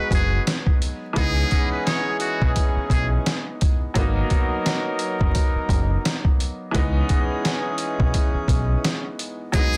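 A muted trumpet leads the opening of this short boom-bap hip-hop excerpt, its buzzy, thin jazz line carrying a light vibrato over a brilliant, slightly detuned upright piano and a horn section playing smooth-topped stabs, all three touched by plate reverb. The mood is reflective yet tough, moving at 86 BPM with a gentle 16th-note swing through G#m7 and C#m7 harmonies. Sampler-style drums sit up front, gritty and pitched down, with a thumpy kick and a medium-tuned snare that sound re-recorded in a small room. A dark, round, punchy fingered dub bass anchors the low end. After the trumpet falls silent at 3.1 seconds, the piano and horn stabs carry the texture until the trumpet briefly reappears at 9.5 seconds alongside a grainy, vintage tube shaker in the background. The dense, heavily limited master carries a layer of vinyl crackle and a light reverb.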